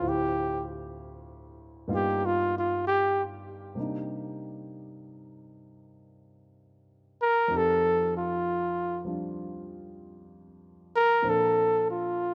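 A flugelhorn and grand piano open together in a wistful, intimate slow jazz swing at 64 BPM. The flugelhorn carries the melody up front as a featured solo, its warm tone marked by light vibrato and scooped notes, while the piano's short-sustained chords sit well beneath it, moving from Dm9 through G7alt and Cm9 to Fsus2 and Bbadd9. Light reverb and small-room ambience give this 12.3-second cut from a longer piece the rough, close feel of a home demo.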